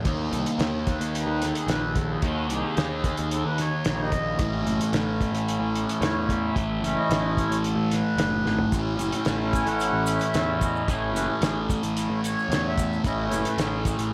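This trippy, kaleidoscopic psychedelic rock excerpt opens with a double-tracked fuzz guitar riff, up front and soaked in distortion, phaser and analog delay, alongside a round, punchy overdriven picked bass. A hand-pumped harmonium carries the lead with reedy, nasal sustained chords that breathe through the middle of the mix. The cloth-damped drum kit sounds muffled and lo-fi, with a fat snare, a tight kick and a gritty, rolled-off top, all touched by delay. The tempo sits at a straight 111 BPM in 4/4, in A lydian, with the chords moving from D# to A at 4.4 seconds. A drum fill at 8.5 seconds ushers in grainy maracas at 8.7 seconds, tucked in the background of an echo-heavy, small-room mix.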